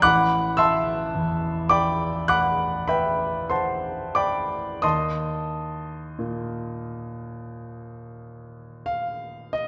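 A clear, intimate grand piano sits up front in a moderate stage reverb, its action noise audible, as this luminous, hazy impressionist solo passage drifts in rubato from Am6 to Eb5 at 4.8 seconds, spanning A1 to F#6 across a brief 9.7-second fragment cut from a longer piece.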